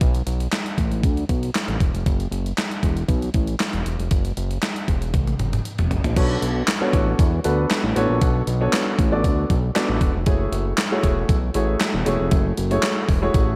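Early-eighties boogie funk at 117 BPM in B dorian, with a late-night, danceable mood, cut from a longer piece. A clean 12-bit drum machine with a thumpy kick, handclaps and overdrive plays from the start alongside a fat, saturated sawtooth bass, moving from Bm7 to F#m7 before a drum fill at 5.1 seconds. At 6.2 seconds an intimate grand piano with audible action noise and slapback echo enters over Bm9 and F#m9, all set in light digital ambience.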